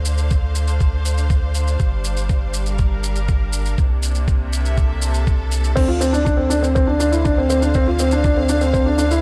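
A small, close room frames this moving, hypnotic piano-and-strings electronica in D minor at 121 BPM, where a lush, bowed string section fades in on sustained chords from Dm7 through Gm7 and C13, a round, deep analog bass pumps against the sidechain beneath a muffled, thumpy kick, electronic shaker and crash cymbal add produced sheen, and at 5.8 seconds a soft, felt-muted upright piano steps up front with an intimate, delayed riff in this short cut from a longer piece.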